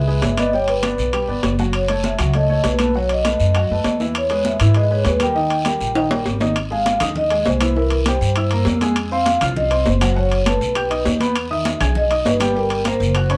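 A live band shares one room under light reverb in this lively, sunny Afro-Cuban jazz passage, cut from a longer piece and set in a straight four. Mellow soft-mallet vibraphone with a fast motor vibrato carries the melody over an intimate grand piano whose action noise and deep low end can be heard, while a bright, woody pizzicato upright bass sits up front. Ringing, high-tuned congas struck with hard hands, close and dry metal-shell timbales, a raspy, saturated guiro and background claves fill out the percussion, and a drum fill from 6.0 to 6.6 seconds carries the band into a fresh run of chords.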